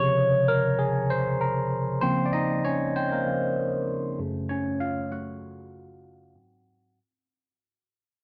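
Over a lightly swung sixteenth-note feel in 4/4, a romantic, lush soul fragment cut from a longer piece features a solo tine electric piano, barky and lightly overdriven through a combo amp with a phaser, sitting up front in a dry, close 1970s-style studio sound with digital ambience and lossy compression artefacts, moving from Dbmaj7 through Db6 and Gbm to Ab7 as it fades out from 2.0 to 7.0 seconds.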